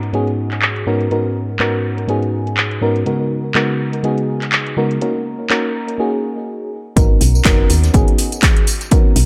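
Deep house at 123 BPM in G# minor, warm and hypnotic, this 9.3-second piece cut from a longer track opens with up-front mellow FM electric piano stabs, soft and warbling with chorus, 12-bit sampler grit, sidechain pumping and tape echo, over an overdriven house kit of handclaps, tambourine and metallic, filtered hats, moving through G#m11, C#13sus4 and D#m7 to a break at 6.0 s before the drop at 7.0 s brings in a round, woody FM bass, a punchy overdriven electronic kick and a very quiet gated 80s kit with a fat snare, all bathed in spring reverb in an echo-heavy mix.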